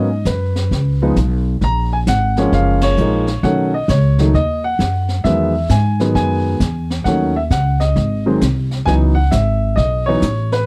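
This jazz piano trio excerpt has a swinging, late-night mood, with a swung feel in four. A warm concert grand piano carries the melody with an open tone, deep bass register and close presence. An upright bass sits equally forward, its plucked steel strings giving a woody, thumpy pulse beneath. A brush drum kit joins at 0.3 s and sits lower in the mix, with dark cymbals, a high-tuned snare and a boomy kick heard in a natural studio room. The whole trio hits a shared accent at 2.8 s while the harmony moves through seventh and ninth chords such as F#maj9, Emaj9 and D#m7b5 before settling on C#m11. The dry, close sound recalls a 1970s studio session.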